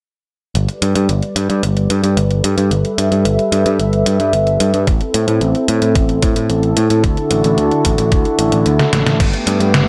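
An overdriven, picked electric bass sits up front with a dark, round, punchy tone, running through a filter sweep in this romantic, uplifting synthwave excerpt at 111 BPM in G major, moving from Gadd9 through Am and Dadd9. Behind it, a smooth, warbling vintage analog pad holds soft-attack sustained chords with chorus and sidechain pumping, and it also carries a filter sweep. A detuned 8-bit drum machine supplies a medium-tuned snare, hi-hat and crash cymbal bathed in gated reverb, a thumpy electronic kick joins at 4.9 seconds, and a drum fill arrives at 8.8 seconds within a light digital ambience.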